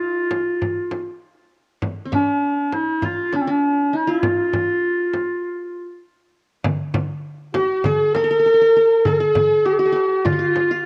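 A straight 4/4 pulse at 100 BPM carries this passionate Arabic maqam ensemble piece in F maqam huzam, cut from a longer performance, with a close, dry frame drum struck with hard hands under a soft-attack solo clarinet that sits up front yet sounds distant and roomy in a classical style. A bright-edged, plectrum-plucked qanun with triple strings plays a second line beneath it, and the ensemble drops to a stop at 5.4 s. A crisp, small metal-shell darbuka joins at 6.6 s, and a lush, focused bowed violin section with vibrato adds a further line from 7.6 s, all heard through a warm home cassette recording with moderate spring reverb in a small room.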